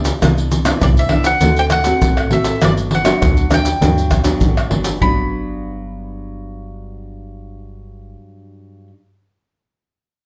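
Festive and lively, this short cut from a longer samba and choro piece moves at 100 BPM in a straight 4/4, set in G major and tuned slightly high. A fingerpicked, classical nylon-string guitar sits up front with accompaniment from the first moment, joined by a metallic FM bass whose dark, digital notes strike with a fast attack and decay low in the register. Maracas, pandeiro, surdo and tamborim drive the opening with a deep, compressed, saturated sound and hard hands, then fall away at 5.2 seconds. A picked bowl-back mandolin enters at 0.8 seconds with its double strings carrying the melody high above, bathed in plate reverb, while the harmony passes through Cmaj9, D7 and Gmaj7. The whole is heard from further back in a reverberant studio room with a softened top end, shifting into a second section at 5.0 seconds before the guitar and mandolin close the passage.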